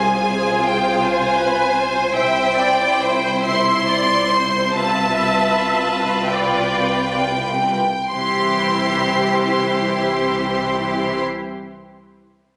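Captured on a phone in a reverberant room, this fragment of a slow romantic movement for string orchestra carries the bloom of a scoring stage, with a tender, warm mood in 6/8 at 30-55 BPM counted in dotted quarters. Up front, the violins sing a clear, focused melody with vibrato high above a second violin line, while more distant violas add lush accompaniment and the basses and a rich, background cello section anchor a low C. The rubato pulse slows from 1.0 to 8.1 seconds as an F minor chord over C resolves to C major at 2.1 seconds.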